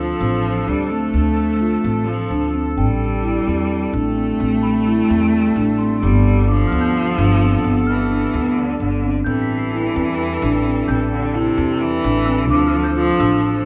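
Heard in a moderate recital-hall reverb, the recording has a dark, warm production that gives this restless, playful piece of contemporary chamber music a rounded glow. It moves in an uneven 7/8 metre with a straight feel, and the marimba, played with soft mallets, carries mellow, round arpeggios from the opening. Up front, an acoustic upright bass plays a woody pizzicato bass line on steel strings, while a single bowed cello, bright and focused with vibrato yet slightly distant, sings a second line. A warm woodwind section holds sustained chords in a classical style with light vibrato. At 2.8 s a celesta enters in the background, adding a delicate, bell-like, sweet and airy texture high above the ensemble, and the music shifts into a new section at 9.3 s before this excerpt of a longer piece ends.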